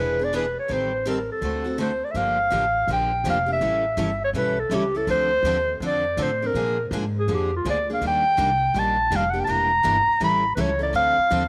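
A swung 4/4 pulse at 164 BPM drives this fiery, virtuosic slice of acoustic string swing in the jazz manouche style, set in G minor and cut from a longer piece. Up front, a breathy clarinet carries the solo melody in a mellow jazz voice, with vibrato, scooped notes and a smooth top. Two picked steel-string acoustic guitars supply the accompaniment, both bright with audible finger squeak: one a full-bodied jumbo with fresh strings, the other a concert guitar sitting a little lower in the mix. Beneath them, a pizzicato upright bass on gut strings lays down a woody, dark, thumpy foundation. The harmony moves from E7 through Am7b5 and D7 into a new passage on Gm7 at 2.2 seconds, later passing through Bb7 and Ebmaj7 before settling on Dm7 at 10.9 seconds, heard within light reverb and studio ambience.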